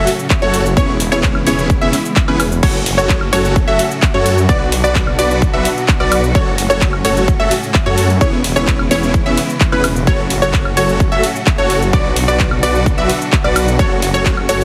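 A straight 4/4 pulse at 129 BPM drives this emotional, powerful festival progressive house drop in F# minor, where a punchy, up-front electronic kick from 0.3 seconds and a big-room dance kit with metallic hats, claps, shaker and woodblock push a huge, thick supersaw riff, lush delayed pluck arpeggios, a menacing, beating detuned saw bass and distant bowed strings holding sustained chords, all pumping against the kick through a heavily compressed, radio-style sound.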